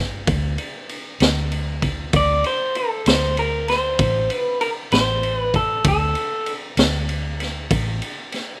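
Rollicking and laid-back, this slow blues fragment in 12/8 at 65 BPM puts a slightly broken-up, lo-fi electric guitar through a small old amp up front with slapback echo, carrying the melody over a dark, round, foam-muted fingered electric bass, while a raw garage drum kit joins at 0.3 s with a punchy kick, high-tuned snare and ride cymbal that sound gritty and saturated with a rolled-off top, all in a dry outdoor take whose harmony settles on D5 at 2.1 s.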